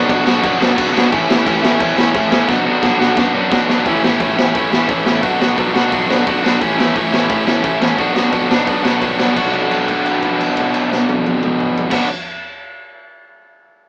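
A bright, double-tracked distorted electric guitar riff sits up front in this aggressive, urgent punk rock excerpt, backed by a growly fuzz bass in the background and a raw garage drum kit with a boomy kick and pumping small-room grit, whose fill at 2.5 seconds drives into a new section before a held note rings out from 9.4 seconds, the band captured playing live in one room with light reverb and a small-speaker sound.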